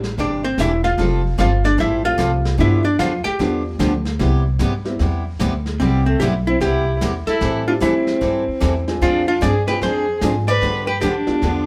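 A dark, clean hollow-body archtop guitar sits up front with a jazzy solo over a woody, thumpy upright bass, muffled brushed drums, a bright picked dreadnought acoustic and a mellow upright piano in the background, joined at 5.8 seconds by a smooth bowed fiddle with light vibrato in this playful, cheerful western swing excerpt recorded live in a small, reverberant room.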